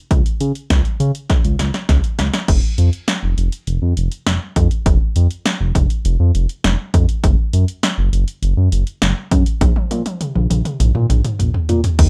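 A light reverb surrounds this short fragment of synth-pop, with both parts placed up front in the mix. The mood is melancholic and nocturnal, moving at a moderate pace in a straight four-beat feel. A smooth, dark synth bass blends sawtooth and square-wave tones with ring modulation, its fast attack giving way to sustained notes that range from deep lows into the lower middle register. Beside it, a punchy analog drum machine with a tape-warm character delivers a punchy kick and snare along with hi-hat, toms and crash cymbal. Both parts play throughout, and the music moves into a new section at 2.5 seconds. Drum fills stand out just before that change, from 1.3 seconds, and again from 9.6 seconds until the close.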